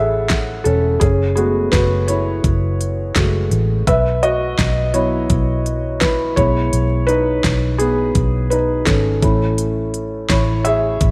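A soft, intimate pop excerpt with light digital ambience, where a mellow felt-muted upright piano with audible action noise sits up front over chords moving from A through F#madd9, Bsus4 and E/B, joined by a round, foam-muted vintage electric bass and, from 0.3 seconds, a layered electronic drum kit with a knocking kick, fat snare and crisp hats, giving the short cut from a longer piece a warm, anthemic lift.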